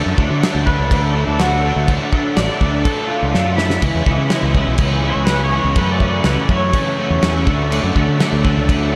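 Indie rock at 124 BPM in D lydian, carefree and wistful, cut from a longer piece and steeped in a dreamy, reverb-soaked mix. A slightly broken-up lead guitar through a small old amp carries the solo melody with lush chorus and tape echo over a bright, overdriven picked guitar riff, a very quiet tonewheel organ holding sustained chords on a slow rotary speaker, and a growling, punchy fingered bass up front. A cloth-damped, thuddy drum kit with dark cymbals and a fat snare plays a fill at 3.3 seconds before a twangy, compressed twelve-string guitar enters at 3.8 seconds in the background, as the harmony moves from D to C#m7, F#m7 and Dmaj7.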